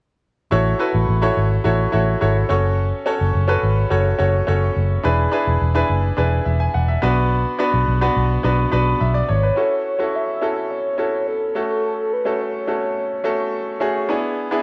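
A straight 4/4 pulse at 106 BPM drives this urgent, moody 1980s-style pop fragment, cut from a longer piece, as a brilliant, polished grand piano with short sustain plays accompaniment over an A6, F#m, E7 and Bm progression, joined by a dark, foam-muted, punchy fingered electric bass until 9.5 s. At 9.3 s a velvety, detuned synth lead built from sawtooth, triangle and sine waves takes the melody, smooth and sustained with vibrato, chorus and a cassette-tape tint. Wet spring reverb and a homemade cassette sound frame the recording.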